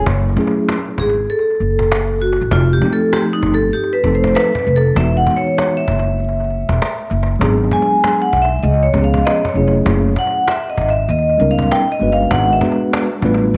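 An echo-heavy mix with vinyl crackle, light reverb and small room ambience frames this cool, smoky jazz-hop excerpt in F# dorian at 98 BPM, swung on the 16ths. Up front, a growly pizzicato upright bass with steel strings opens at 0.0 s. It is joined by a woody cajon with faint snares and a mellow, clean tine electric piano heard through its built-in speakers, with analog delay on both the cajon and the piano. At 1.0 s a dark, metallic vibraphone played with medium hard mallets steps up front to take the solo, ringing and smooth with slow motor vibrato and analog delay, over chords moving from F#m9 through Emaj9 and C#7 before it stops at 12.8 s.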